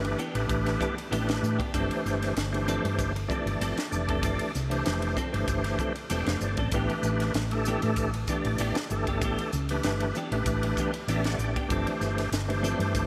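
Electric jazz fusion at 96 BPM in 4/4 with a light sixteenth-note swing, bright and slick, where a reedy, up-front tonewheel organ with key click, chorus vibrato and fast rotary speaker carries the accompaniment and adds fills at 5.8 and 10.8 seconds over A9sus4 and G9sus4 chords, while a compressed, picked clean electric guitar with ensemble chorus places stabs in the background until 12.8 seconds, a dark, round hollow-body fingered bass anchors the low end, and a crisp drum kit with a high-tuned snare, punchy kick and bright hi-hat and ride sits in a pumping small room, all wrapped in a lush hall reverb and bright 1980s-style digital production in a short cut from a longer piece.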